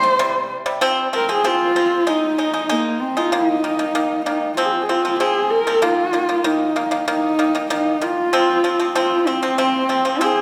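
A husky, dark horsehead fiddle carries the melody from close up, with its bowed horsehair strings bringing a soft attack, an airy bow, vibrato and sliding portamento to this solemn, vast Mongolian folk excerpt at 96 BPM in 4/4. Up front beside it, a bright, dry pipa played with fingerpicks adds percussive arpeggios throughout. The pair sit in a wet scoring-stage reverb, and the passage moves into a new section at 5.8 seconds.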